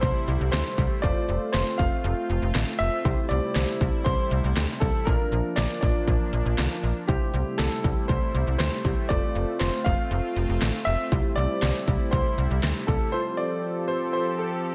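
An overdriven pop drum kit sits up front with a punchy kick, deep snare, bright hi-hats and handclaps, giving this bright, nostalgic synth-pop passage in F major its layered, electronic drive at 119 BPM in a straight 4/4. Beneath it, a slap-like FM bass adds snappy, metallic attacks that decay, and both drop out at 13.0 s, leaving the other parts to carry the final moments to 14.7 s. A polished grand piano carries the melody with a present tone, dressed in slapback echo and delay. Round, detuned sawtooth analog keys supply accompaniment through chorus, phaser, slapback echo and a filter sweep, while an evolving, resonant pad holds sustained chords with a slow attack, filter swell, long release and chorus shimmer. The harmony moves between C6, F and Bb before settling on Fadd9, and a moderate recital-hall reverb gives the whole passage a big arena sound.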